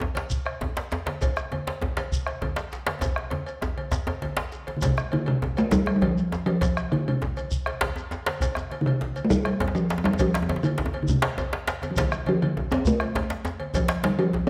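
A 12/8 pulse drives this earthy West African drum ensemble, cut from a longer piece, with a straight feel carried from the opening moments by a full bed of percussion. Up front sits a deep, close and dry djembe, while a second, tight and cracking djembe with a compressed, saturated edge plays in the background alongside bright, low-tuned congas with a thin skin. A dark, dry bombo anchors the bottom, a metallic, band-limited cowbell with a vintage tinge sounds alongside, and a grainy, mellow shekere adds texture. A drum fill runs from 3.0 to 4.8 seconds, and at 4.8 seconds a resonant talking drum enters up front, carrying the melody between C3 and C4 for the rest of the passage. A moderate recital-hall reverb gives the driving ensemble a sense of space.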